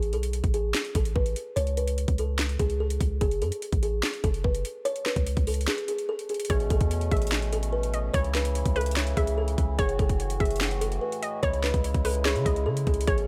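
Trap-flavored hip hop at 146 BPM in a half-time feel, this dark, brooding excerpt is cut from a longer piece. A soft, woody kalimba carries the melody with a short fingertip pluck and a touch of delay, sitting in a boxy small room over a deep, sine-toned 808-style bass whose long notes decay after a fast attack. The trap drum kit is electronic and up front, with a hard-clipped kick, sharp snare, metallic hats and handclaps, all carrying a tape-warm color. After a brief break from 5.7 to 6.5 seconds, a hollow, bouncy square-wave pluck with a noise layer and filter sweep joins as a second line, dressed in chorus and delay, alongside a reedy, breathing harmonium holding close-miked, dry sustained chords. The harmony moves from Asus2 and F#m through C#m, and a digital ambience surrounds the mix.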